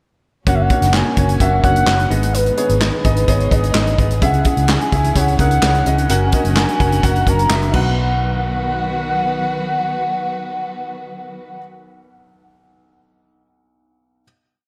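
Piano-driven pop in B major at 128 BPM, hopeful and uplifting, where a velvety synth lead with chorus and slapback echo carries a motif-based melody over woody upright piano chords, a lush bowed string pad in the background, a dark, round muted electric bass driving eighth notes, and a punchy country drum kit with clap-layered snare backbeat that drops out at 7.8 s, leaving the final B chord hit to ring in a big hall reverb as the piano continues alone until 14.2 s.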